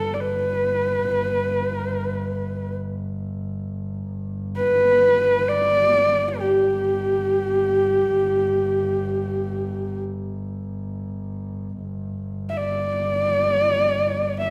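A recital hall's reverb surrounds this brief Mongolian folk excerpt, which unfolds in free time in a G gong mode with a proud, vast mood. Up front, a single bowed horsehead fiddle carries the melody from start to finish, its horsehair strings sounding dark, woody, boxy and husky, shaped with vibrato and portamento. Beneath it, one bowed double bass holds a low G drone throughout, earthy and smooth on top with a light vibrato.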